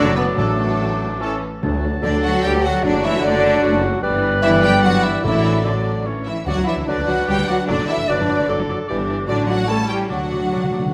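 Cheerful and graceful, this quick classical-period movement in triple time sets a lush, vibrato-rich violin melody over a second violin section, clear oboe, hollow flute, distant clarinet, viola and bassoon accompaniment, soft-edged French horn chords, brief trumpet stabs that stop at 1.4 seconds, cello and focused double bass, and hard-mallet timpani that close with a fill from 10.1 seconds, all within a moderate scoring-stage reverb.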